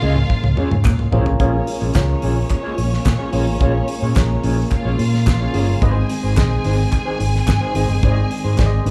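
A round, up-front fingered electric bass drives this danceable disco excerpt, starting with a drum fill on a damped 70s kit with a fat snare and tight kick, alongside a dark, worn grand piano with audible action noise, a clean electric guitar with harmonic tremolo, a percussive tonewheel organ with key click and fast rotary speaker, and a lush, bowed string section, while hollow group handclaps join in the background at 0.8 seconds, all played live together in a large studio room.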